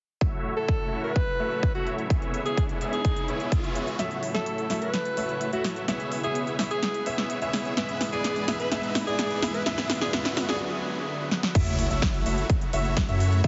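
A breathy alto saxophone with light vibrato and scooped notes carries the solo melody over this euphoric, powerful festival progressive house cut in F# minor at 127 BPM, backed by a lush supersaw pad and a thick, bright, detuned supersaw riff, both pumping with sidechain. Punchy, overdriven big-room drums with crisp hats and a layered electronic kick drive the groove, while a very quiet riser and sub drop build tension and a dark, boxy concert grand piano adds filtered arpeggios from 4.0 s through the build-up. The drop lands at 11.6 s with the kick and a deep, saturated sine sub bass, all wrapped in a huge ambient reverb and a heavily compressed, radio-like sound.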